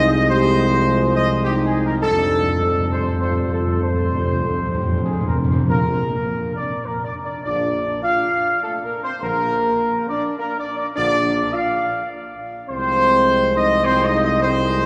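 Classical brass in a majestic, regal triple metre, with a dark, tight trumpet section carrying the melody up front over background sustained chords from the mellow French horns and lightly vibrato-touched, warm trombones, a smooth-topped tuba bass, and articulate calf-head timpani struck with hard mallets from 2.0 to 6.5 s, all bathed in the long, wet reverb of a cathedral-like hall.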